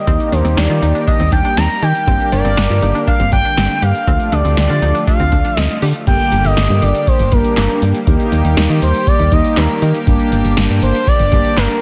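Cool and driving, this 120 BPM synth-pop excerpt in G minor sets a smooth, expressive sawtooth lead with vibrato, chorus and tape echo over a lush, detuned unison pad, mellow brassy synth brass, a bright analog pluck whose echoed arpeggios sit in the background until 6.0 s, a punchy, round FM bass up front and an overdriven electro analog drum machine with deep kick and metallic hats, as chords move through Eb, Gm and Dm in a dense, heavily limited mix with light reverb.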